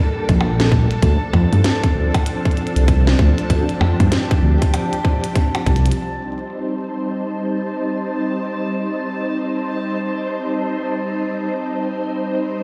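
Cerebral and melancholic, this IDM piece moves at 97 BPM in C dorian with a swung 16th-note feel, its silky, warbling string machine holding soft sustained chords with ensemble chorus and sidechain pumping while a resonant, bubbling stepped-filter texture with built-in reverb sits faintly behind. In the opening half a deep, rumbling detuned saw bass and a tight, overdriven electronic kick sit up front alongside a glitchy kit of clicky filtered hats, percussion blips and a tiny snare with tape echo, until a drum fill at 5.7 s leads to the second section at 6.0 s, where the bass and kick drop away. The whole fragment, cut from a longer piece, carries the bare, roomy spaciousness of a big sound system in a bare room with a large studio reverb.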